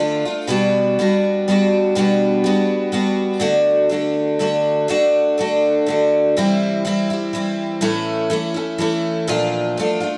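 A picked twelve-string acoustic guitar plays alone from the start, its bright, octave-doubled shimmer sitting up front with a boxy body and the occasional finger squeak. This jangly, open-road rock fragment moves in 3/4 at 123 BPM in D mixolydian, tuned to A4 = 445 Hz, with chords passing from Gmaj7/B through D, C and A before landing on Bbmaj7 at 9.3 seconds. Light reverb gives the guitar an auditorium feel, and it rings until 10.2 seconds, where the cut from a longer piece ends.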